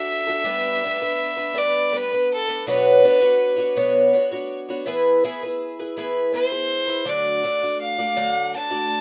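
Nostalgic and hopeful, this short rock cut in D major moves at an unhurried 54 BPM in a straight 6/8, with a clear, earthy fiddle carrying the melody as a solo throughout its 9.0 seconds, bowed by a single player with light vibrato. Beneath it, a picked twelve-string acoustic guitar supplies a dark, woody, boxy accompaniment with the shimmering octave-doubled sound of old strings, moving through G, Bmadd9, E and D. Moderate studio reverb gives the piece a room around it, and the rough home-demo mix keeps it intimate and unpolished.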